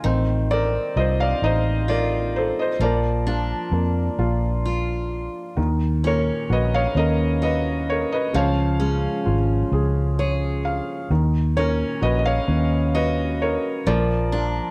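An acoustic folk-pop ballad in Eb minor, this melancholic, heartbroken excerpt moves at a slow 43 BPM in a straight 6/8, with a felt-muted upright piano carrying the melody in a soft, intimate, thin-felt tone touched by slapback echo. A picked steel-string acoustic guitar with woody, old-string character plays arpeggios alongside it, while a vintage muted fingered electric bass sits up front with a dark, round, punchy sound. The dry, close 1970s-style studio recording keeps the parts near, and the piano adds a brief fill from 9.7 to 11.1 seconds over chords that move through Ebm7, Db and Bb.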